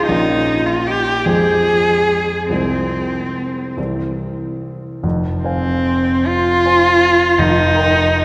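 A lingering church reverb surrounds this short passage from a longer classical romantic duo, while both players sit up front in the sound. A single bowed cello carries the melody between C4 and Ab4 with a soft attack, expressive vibrato and gliding portamento, its tone warm. The concert grand piano accompanies from a deep bass up into its upper register, its notes marked by short sustain. The music is melancholic and elegiac, moving slowly in 6/8 at about 46 to 56 dotted-quarter beats per minute with a flexible rubato feel in F minor. The harmony passes from Bbm through Fm and Fm/C to C, then a new passage begins at 5.0 s on Fm and turns to Gm7/F before the music breaks off at 8.2 s.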